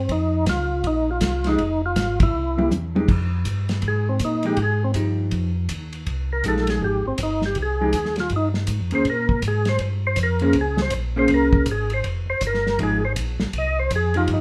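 A gritty, overdriven tonewheel organ carries the melody from the first moment, its slow rotary speaker and chorus vibrato adding a churning shimmer, while a round, mellow tonewheel organ holds down the bass with audible key click. This is a bluesy, smoky soul jazz organ trio in F minor, swinging in 4/4 at 161 BPM, cut from a longer piece. A dark, acoustic soul drum kit with a tight kick and rolled-off top joins at once, and a clean, fingered hollow-body jazz guitar enters at 1.5 seconds to add accompaniment. After a band accent and a short drum fill, the organ takes a solo from 3.1 seconds to the end, its percussive second-harmonic attack cutting through over Fm9 and Bbm9 harmony. The band sits in a moderate large-studio reverb that gives the close, up-front parts a sense of space.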